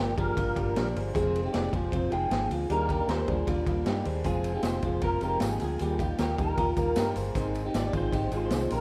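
Jangly indie pop with a bright, nostalgic mood, this short excerpt pairs a slightly broken-up electric guitar melody, shimmering with ensemble chorus and digital delay, against a second lo-fi electric guitar playing arpeggios, both through a small old amp, over a fingerpicked plugged-in steel-string acoustic guitar with audible finger squeak in the background. A dark, round, foam-muted vintage bass sits under a raw, gritty garage drum kit that comes in at 0.2 seconds, up front with a punchy kick and rolled-off top, while a jingly tambourine joins quietly at 4.3 seconds. Moving through chords like Gm7, Fm, Ebmaj7 and Ab, it has the rough feel of a home demo in a small room.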